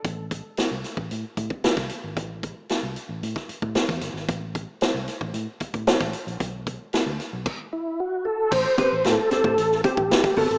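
A rough, small-speaker demo sound bathed in a lush hall reverb frames this cool, hypnotic funk excerpt in A dorian at 113 BPM, where a swinging big-band drum kit with punchy kick and hi-hat sits up front over a dark, round, foam-muted fingered bass, until a lightly overdriven tonewheel organ with key click, chorus vibrato, slow rotary speaker and tape echo enters at 7.7 seconds and a mellow, compressed electric guitar joins at 8.8 seconds as the harmony settles on Am9.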